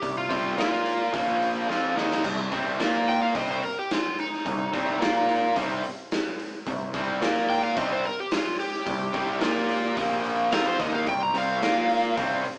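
A distorted electric guitar sits up front, its bright, double-tracked riff driving this brooding, smoky slice of blues rock power trio and southern rock at 108 BPM in C minor, cut from a longer piece. Alongside it, an overdriven slide guitar played with fingerpicks carries the melody with a warm tone, stepping into a solo from 2.2 seconds to the end. A fuzz picked electric bass adds a growly low end, while a raw garage drum kit with a punchy kick, a medium-tuned snare, hi-hat and crash cymbal has a rolled-off top. A drum fill at 1.7 seconds leads into the solo section, as the harmony moves between C and B-flat power chords and C minor. The band sounds like it is playing live in one stone room with moderate reverb, heard through a small speaker.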